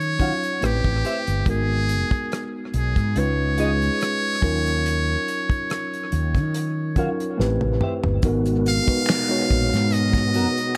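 A buzzy, close-miked trumpet with a metal mute carries the melody up front in this introspective, soulful neo-soul excerpt, its scooped notes trailing dub echo at a relaxed 71 BPM in 4/4 with a light sixteenth-note swing in G# dorian. Beneath it, a worn, slightly out-of-tune tine electric piano plays mellow accompaniment, also bathed in dub echo, while a round, punchy fretless bass sits dark and prominent in the low end. A damped 70s drum kit with a fat snare and tight kick keeps time with hi-hat, rim click, toms and finger snaps, and a drum fill at 7.4 seconds leads into the second section at 8.2 seconds. A picked clean electric guitar adds a quieter second line through analog chorus and echo, and from 8.2 seconds a smooth tonewheel organ enters in the background with key click, slow rotary speaker and chorus vibrato, joined by close, quiet maracas and group handclaps. The harmony moves through minor ninth and seventh chords such as D#m9, Am7, G#m7 and C#9, all set in a small room within an echo-heavy mix.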